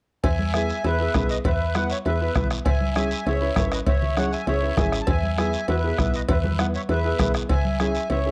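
Joyful and festive, this short cumbia fragment from a longer piece sets a sweet, reedy accordion melody up front over a round FM bass, a close bombo, raspy guiro, bright congas and ringing cowbell and timbales in the background, with a dark, slightly detuned upright piano joining at 0.5 seconds, the accordion and piano both carrying a worn cassette tint in a small, lightly reverberant room.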